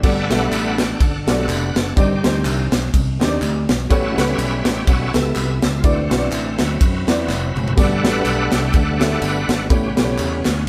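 A swung eighth-note groove at 124 BPM in 4/4 drives this uplifting, hopeful stretch of uptempo gospel in G major, cut from a longer piece. The bright tonewheel organ carries a solo across the whole passage, its full, shouting tone edged with key click and turned through a slow rotary speaker and chorus vibrato. Beneath it, a dark, mellow baby grand piano plays intimate accompaniment with audible action noise and short sustain, while a round, fingered electric bass anchors the low end. The crisp, polished fusion kit sits up front with a punchy kick, a medium-tuned snare, ride, crash, splash and toms, and it plays a fill from 7.3 to 7.8 seconds. Tambourine and group handclaps sit distant in the background, and the band shares a moderate stone-room reverb as the chords move from Gmaj9 through Cmadd9/G, A13 and D13 before returning to Gmaj9 and closing on A9.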